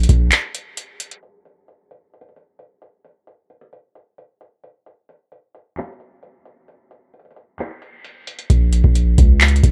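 A booming analog drum machine drives this dark, hard-hitting trap excerpt from start to finish, its deep kick, metallic hi-hats and handclaps sitting up front with the character of a small room. The groove moves in a half-time feel over a steady 4/4 pulse. A long, sustained 808-style bass with a sine tone and fast attack sounds briefly at the opening, drops out for a break, and then returns at 8.5 seconds, decaying with a mellow weight in the low register. Between those moments a filter sweep runs through the middle section of the piece. The overall production is shadowy and low-pass filtered, with little reverb, so the beat feels close and heavy.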